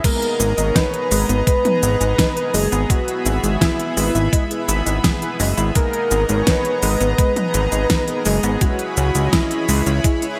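A bright, 1980s-style digital production sits in a lush hall reverb, giving this moody, nocturnal synthwave excerpt a glossy, spacious sheen. At a steady 84 BPM in 4/4 and G# minor, tuned to A4 = 442 Hz, the harmony moves through G#madd9, E/G# and C#m7. A thumpy electronic kick and a layered pop drum kit with a fat snare, crisp hi-hats, shaker, toms and crash cymbal sit up front, and a thick, detuned sawtooth bass enters at 0.4 s with sidechain pumping. A soft supersaw holds smooth sustained chords with sidechain pumping, while a round, nasal analog pluck plays arpeggios through chorus, phaser and delay, and mellow, brassy synth stabs add a dark glow in the background. On top, a full, octave-layered lead carries the melody between E4 and B4, colored by chorus, delay and a cassette-tape haze, with a very quiet, airy second lead adding a second line in the same range.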